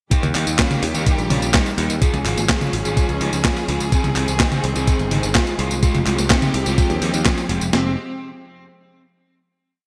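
A thumpy four-on-the-floor kick and snare from a 12-bit drum machine sit up front in this melodramatic, nostalgic Italo disco piece, joined by a second machine part of handclaps, hi-hat, tambourine, snare and high tom bathed in gated reverb. A growly, punchy picked electric bass gallops in sixteenth notes beneath a smooth overdriven lead guitar that repeats a riff melody in thirds and sixths, roughened by vintage sampler grit and digital delay. A lush, bowed studio string section holds sustained chords throughout the chorus until a final chord rings out at 7.7 s, all within a bright 1980s-style digital hall sound.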